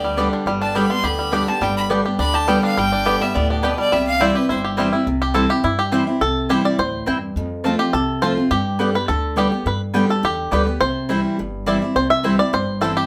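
A live band playing together in a small room, with moderate ambience, frames this driving, lively bluegrass cut. The fingerpicked banjo carries the melody throughout, twangy and percussive at the front of the mix, while the clear fiddle adds a biting, earthy second line with light vibrato and an airy bow until 4.6 s. At 5.1 s the five-string banjo steps forward to take its solo. Underneath, the bright, full-bodied jumbo acoustic guitar picks the accompaniment up front, the mandolin drops in woody double-string stabs from 0.2 s, and the upright bass gives a dark, thumpy pizzicato foundation on gut strings. The harmony moves through G, C, F and back to G and C, and the clip is cut from a longer piece.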